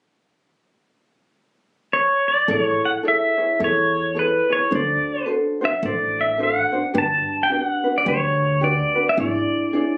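A bright, twangy electric pedal steel guitar, played up front with fingerpicks, slide and volume swells, carries the melody from 1.9 seconds in this dreamy, relaxed Hawaiian fragment in A major at 108 BPM with a gentle swing, joined at 2.5 seconds by a light, thumb-plucked acoustic ukulele and a woody pizzicato upright bass as the harmony moves through Amaj7, D7 and Gmaj7, all heard as if captured on a phone in a club room with moderate reverb.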